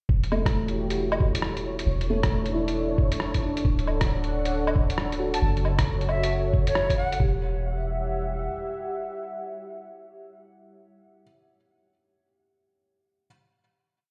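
A muffled, thumpy two-step kick and a round, deep 808-style bass open this ghostly, rainy future garage piece at 135 BPM in E dorian, with a shuffled 16th-note swing. A compressed, pitched-down lo-fi kit of closed hi-hat, low woodblock and rim click adds a skittering beat, while a moody, detuned sawtooth pad with a sub octave and chorus holds dark, slow-blooming chords that pump against the kick along with the bass. A felt-muted upright piano scatters soft, intimate notes through tape echo, and a grainy, flickering texture holds a single high note far in the background. At 5.3 seconds an airy silver flute with gentle vibrato enters for short answering phrases, and at 7.2 seconds the groove gives way to a final Emadd9 chord carried by the pad and piano. The whole mix sounds as if played on a big sound system in a bare stone room, lending a cold, echoing space to the hazy, tape-softened tones.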